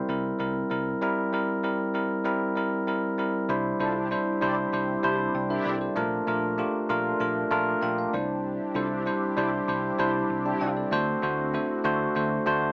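A straight, even 4/4 pulse carries this glossy, uplifting pop clip, cut from a longer piece. A bell-like, bright tine electric piano sits up front and plays the accompaniment throughout, adding a short fill midway, while a round, punchy hollow-body electric bass holds the low end beneath it. At 3.5 seconds a very quiet phased analog pad drifts in with swirling, nasal sustained chords, and from 3.8 to 10.7 seconds mellow synth brass, with chorus on it, adds detuned, brassy stabs. The harmony moves from C7 through Cadd9, Bbmaj7 and back to Cadd9 before closing on D7. The whole clip sounds as if heard through a small speaker in a modest booth ambience.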